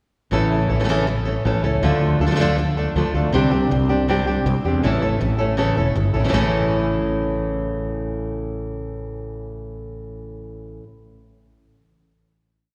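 A full-bodied nylon-string guitar sits up front, carrying the accompaniment with fingerpicked rasgueado strumming, taps on the top and an audible finger squeak in its deep classical tone. This short, complete flamenco piece feels passionate and dramatic, moving in a straight 4/4 through A, Dm and Csus2 before returning to A. Beneath it, a growly fretless electric bass, direct and amped and also placed up front, plays a dotted bass figure in a low register. A second, darker flamenco guitar keeps the cycle with fingerpicked stabs. The groove runs until 6.3 seconds, when all three parts settle onto a final chord that rings out through a wet church reverb with a 2.7-second decay, giving the performance the spacious sound of a church or concert hall.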